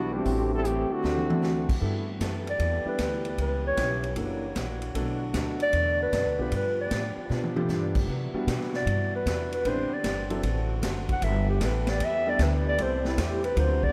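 Big band swing in G major, this energetic, joyful excerpt moves at 153 BPM in 4/4 with a strong swung eighth-note feel, all set in a vast, echoing space with a long cathedral reverb. A bright trombone section opens up front with a soft attack, carrying the second line over the Am7 and D7 changes until 1.7 seconds, while a drum fill on the roomy, distant kit with its high-tuned snare and boomy kick pushes toward the next passage. At 2.5 seconds a mellow clarinet takes the melody, playing with subtone, light vibrato and scooped notes for a vintage flavor, sitting up front as the soloist through chords such as C#m7b5, F#7alt and Cmaj9#11. Underneath, a second, tighter trombone section holds sustained chords in the background, and a clear baby grand piano with short sustain adds accompaniment. A growly, woody upright bass played pizzicato stays prominent in the low end, while a boxy, very quiet parlour guitar with old strings is picked softly beneath it all. 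The excerpt ends mid-phrase as the changes return to Am7.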